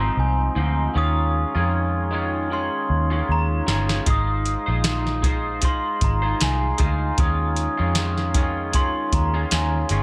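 A mellow, bell-like glockenspiel played with rubber mallets carries the melody through subtle chorus and tape echo in this sunny, hazy indie and bedroom pop fragment, over a twangy, slightly broken-up electric guitar with analog chorus and warbly pitch drift and a round, foam-muted electric bass, until a soft vintage rhythm box with a deep kick, crisp snare and metallic hats joins up front at 3.7 seconds, all set in a light digital ambience.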